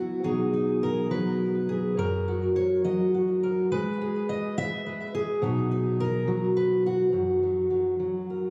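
In a straight three-beat metre, this peaceful, hopeful folk fragment, cut from a longer piece, features a lone fingerpicked steel-string jumbo acoustic guitar, dark and full-bodied and sitting up front with a touch of tape echo, moving through B, a chordless passage at 2.0 seconds, then G#m, B and F#, captured on a phone in a room with light club reverb and compression.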